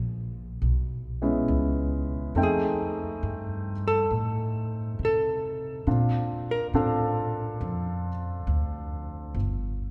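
A long, wet church reverb of 3.5 seconds surrounds this short cut from a tender, romantic jazz ballad, recorded in a church or concert hall. At 69 BPM in 4/4 with a swung eighth-note feel, an acoustic upright bass opens the excerpt, plucked pizzicato on steel strings with a woody, growly tone that sits up front. A concert grand piano enters at 1.2 seconds as accompaniment, warm and intimate with deep bass and audible action noise. At 2.4 seconds a clean, dark hollow-body electric guitar picks the melody in a narrow upper range over chords moving from a rootless Amaj9 through F7 to Bbmaj7. The guitar drops out at 6.7 seconds, leaving bass and piano to close out the passage, tuned slightly high to A4 = 444 Hz.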